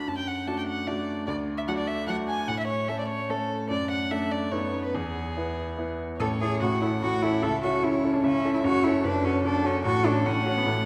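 In a quick, straight 3/4 at 148 BPM, this cheerful, graceful classical-period movement for piano trio in A major sets a rich, pure violin melody, bowed sul tasto with a soft, floating attack, over a bright, brilliant grand piano accompaniment with long sustain placed up front, while a clear, nasal cello, close and likewise sul tasto, joins with a second line at 0.5 s and the recital hall reverb lends a wet bloom as the music moves into a new section at 6.2 s.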